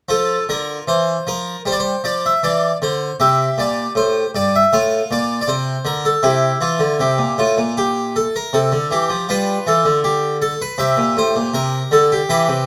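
Closely miked and detailed with a light reverb, this excerpt from a longer baroque-style suite movement features a solo harpsichord in the French style, up front, full and plucked on two sets of strings, playing with a flowing, serene rubato across a range of G2 to F5 as it moves from an opening Dm9 through F/A and C to close on a bare C5 at 10.8 seconds.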